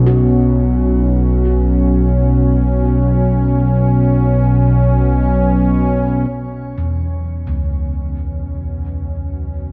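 A warbling, detuned analog drone sits up front, sustaining low tones from B1 to B2 under a chorus shimmer that gives it a vintage, slowly evolving character. Above it, a bright, sweeping resonant pad holds sustained chords in a sawtooth voice with a filter swell and slow attacks, also chorused and close to the listener. Bronze, gamelan-type bossed gongs enter at 0.1 seconds with arpeggios ranging from C#2 to F#4, their round, metallic tones beating and scattered into a diffuse ambient delay. This unsettling, cavernous ambient piece floats in free time around a Bsus2 harmony, tuned slightly sharp to A4 = 441 Hz. A dark production and a cathedral reverb with a 4.7-second decay wrap the sound in a vast, wet space, and the fragment shifts into a new section at 6.3 seconds before it is cut off at 9.7 seconds.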